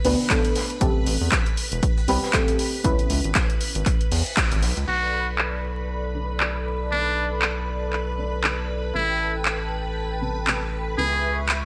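Deep house at 118 BPM in B minor with a swung, hypnotic pulse: a punchy electronic kick, a house kit of claps, crash and softened hats, and a gritty, dark breakbeat kit in the background drive the first 4.8 seconds, while a round analog bass, dark detuned chord stabs with chorus, phaser and tape echo, and a shimmering string machine pump under sidechain throughout. At 4.9 seconds the kick and breakbeat kit have dropped away, a smooth sawtooth pad enters, and a buzzy, metal-muted trumpet takes a forceful jazz solo with vibrato and tape echo over Bm7, Am7 and C#m7 chords. The dry hardware recording carries vinyl crackle and a light studio reverb, and this is an excerpt cut from a longer piece.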